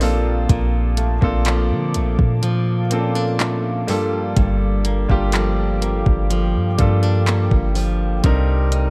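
A soft, up-front electronic drum kit of handclaps, hi-hat and a gentle kick sets a slow, sensual contemporary R&B groove at 62 BPM in 4/4, its warm hats and tape-warm sound giving the beat a mellow glow. Beneath it, a round, sine-like 808-style bass sits just as far forward, each deep note striking quickly and then decaying. A concert grand piano supplies intimate accompaniment with audible action noise and a vintage smoothness, while a bright, boxy flamenco guitar fingerpicks arpeggios, finger squeaks and a slapback echo adding character. Higher up, a dark ambient pad built from detuned sawtooth and sine layers with a sub octave holds slow-blooming chords, thickened by chorus and its own reverb. In G minor, this moody short clip moves from Bbmaj7 to Gm7 at 3.9 seconds and reaches Cm7 at 8.2 seconds, all within a dry, dark production.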